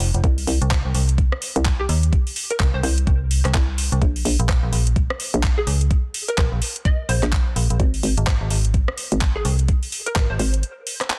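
A groove swung at 60% on the 16ths, at 127 BPM in 4/4, drives this gritty, bouncy bass house excerpt, anchored by an up-front, knocking electronic kick and a garage kit of handclaps, metallic hi-hats and rim clicks that sits lower in the mix, both drum parts layered and tape-tinged. Two FM basses carry the low end: one dark and metallic, the other hollow and punchy, both up front, tube-saturated and pumping from sidechain compression. From 1.8 seconds a quiet, detuned square-wave pluck adds chorus, 12-bit sampler grit, dub echo and a filter sweep, all inside a dry, dense, heavily limited mix that drops into a short break at 10.6 seconds.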